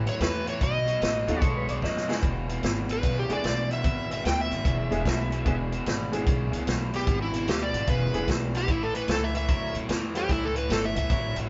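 Recorded as a band playing live in one stone room with moderate reverb and a dulled top end, this gritty, soulful electric blues shuffle swings at 149 BPM in E mixolydian. A dark, overdriven slide guitar sits up front and takes a solo from 2.2 seconds, over a bright, picked riff on overdriven semi-hollow guitar, thumpy pizzicato upright bass, and a mid-forward vintage kit with punchy kick and medium-tuned snare that plays a fill just before the solo. A brilliant, slightly detuned upright piano with audible action noise accompanies in the background until 10.3 seconds, and a lo-fi, slightly broken-up guitar through a small old amp adds a brief second line at 1.3 seconds.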